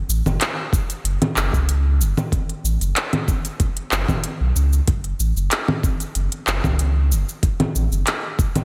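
A lightly reverberant, up-front mix carries this hypnotic, meditative organic downtempo excerpt in F# minor pentatonic at 94 BPM, where a deep, round, mellow sine sub bass with tube saturation holds sustained low notes, an electronic-sounding kit of congas, handclaps, crisp hi-hat and shaker sits in a large-room ambience, and a gritty, thumpy, compressed kick joins at 0.7 s with a tape-tinged, small-room character.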